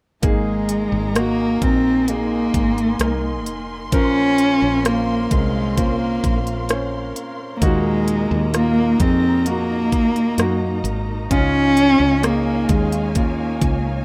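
A heartfelt, emotional pop ballad moves at a slow 65 BPM in a straight 4/4, its chords passing from Absus2 through Bbmadd9 and Ebm to Dbadd9. A close, bowed solo cello carries the melody up front, its soft attack, vibrato and portamento giving the line an expressive, singing quality. Beneath it, a baby grand piano with open tone and long sustain provides the accompaniment, while a lush studio string section holds sustained chords with a smooth top. A round, dark fretless electric bass with a woody, hollow-body character anchors the low end, and an electronic, layered pop drum kit sits up front with a knocking kick, crisp hi-hats and rim clicks. The mix has the rough feel of a home demo in a small room, and this excerpt is cut from a longer piece, with all parts entering at 0.2 s and playing to about 14.0 s, the drums stopping slightly earlier at 13.8 s.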